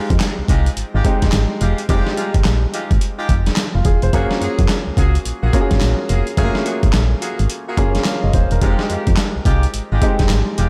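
A swung 16th-note groove at 107 BPM in 4/4 drives this bouncy, punchy new jack swing excerpt in F minor, built on a dusty, sampler-style drum kit of handclaps, hi-hat, thumpy kick and medium-tuned snare that sounds gritty, overdriven and up front, alongside a round, dark FM bass with a fast attack. A clear concert grand piano with deep bass and short sustain carries the accompaniment, while a distant, roomy jazz-style horn section adds stabs through delay, as the harmony moves from Fm9 to Gbmaj9 at 4.1 seconds and back to Fm9 at 8.6 seconds. A moderate recital-hall reverb gives the mix a big arena sound.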